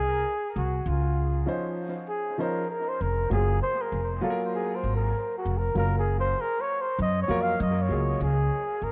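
Relaxed and warm, this short hip hop fragment in Db major moves at an unhurried 98 BPM in 4/4, with a lazy 16th-note swing. A breathy flugelhorn takes the melody as a close-miked, jazz-style solo from the start until 8.2 seconds, its dark tone shaded with vibrato and trailed by dub echo. Beneath it, a woody pizzicato upright bass on steel strings sits up front with a bright, thumpy attack. A dark, mellow, vintage-sounding upright piano joins at 1.5 seconds, playing smooth accompaniment that also carries dub echo. The harmony drifts from Dbmaj9 to Gbmaj9 before settling on a bare Db5. Moderate spring reverb and an echo-heavy mix give the whole fragment a soft, hazy space.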